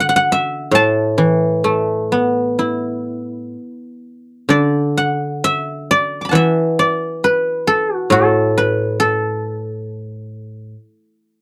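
Chinese traditional solo music for plucked strings, this elegant, serene passage is cut from a longer piece and moves in free, rubato time. A guzheng plays alone from start to finish at 11.2 seconds, played with fingerpicks and sitting up front, its silvery, ringing tone reaching from A2 up to D6, with a new section arriving at 4.5 seconds. The close, dry 1970s-style studio sound carries a light touch of reverb.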